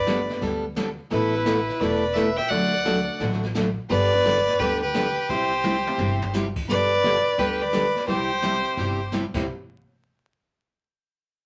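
Two bowed fiddles open this swinging, playful western swing tune at 172 BPM in C major, a clear, focused lead up front over a darker, smoother second line, with woody pizzicato upright bass beneath, while a bright, full-bodied picked steel-string acoustic guitar, a brilliant upright piano that drops out from 6.0 to 8.4 seconds, and a distant, roomy jazz brush drum kit with a fill at 5.6 seconds fill out the band in a reverberant studio ambience touched by vinyl crackle.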